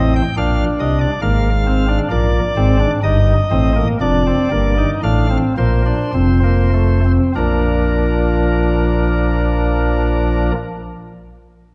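A chamber organ on a nasal cornet solo stop, set up front with audible chiff and a tremulant, opens this joyful, elegant fragment of a baroque-style three-part fugue in Bb major and 3/4: its tempo, within 47 to 71 BPM, slows through the first 7.4 seconds as the harmony passes from Bb through Eb/G and F back to Bb, and the organ, spanning F1 to G5, stops at 10.5 seconds in a dark, warm production set inside a reverberant concert hall.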